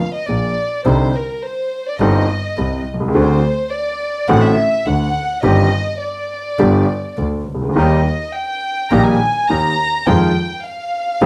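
A chamber violin section opens at 0.0 s, bowed sul tasto with light vibrato and a soft attack, sitting close and up front with an intimate ensemble tone as it carries its solo line over the whole passage. At 0.3 s a grand piano joins with polished, present accompaniment and long sustain, while a single bowed double bass adds a clear, airy bass line, also played sul tasto with gentle vibrato. This short tango passage in C minor moves at 104 BPM in 4/4 with a rubato feel, its passionate, dramatic mood shaped by harmony that travels from Bb and Cmadd9 through D7 and Cm/G to G, Eb and Fm7. From 7.8 s a reedy, bright bandoneon slips in behind the others with airy stabs. Moderate studio reverb and the soft grain of a home cassette recording wrap the small ensemble in a warm, close-knit sound.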